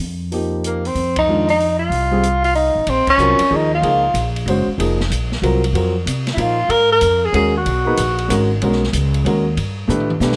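A swinging 3/4 pulse at 188 BPM drives this intense, searching modal jazz fragment, with a woody, thumpy pizzicato upright bass up front and an open acoustic drum kit of dark cymbals and a boomy kick, the band punching accents at 1.1 and 3.0 seconds and the drums closing on a fill from 9.9 seconds. A dark concert grand with deep bass comps beneath a mellow tenor saxophone that enters at 0.7 seconds, its subtone, vibrato and scooped notes sounding distant and roomy yet prominent. Moderate spring reverb surrounds the group as the harmony moves from F7sus2 through Bbm11 and Abm11 to G.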